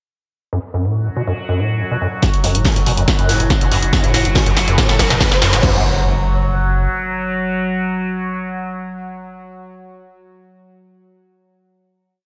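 Relentless and intense, this short piece of driving peak-time techno opens on a squelchy, resonant acid bass riff with filter sweeps and slides, joined at 1.0 s by a slow-blooming sawtooth drone whose overtones shift beneath chorus and reverb. At 2.2 s the build arrives with a punchy four-on-the-floor kick, a tape-warm analog drum machine with hats, snare, toms and crash, a very quiet gritty breakbeat loop, and a deep, round sub bass rumbling between the kicks. A drum fill drives the build, and from 3.6 s a background riser pushes toward the impact. From 5.6 s the drums and riff fall away, and the sub bass lingers briefly before leaving the drone and the transition effects to ring out in a dreamy hall reverb.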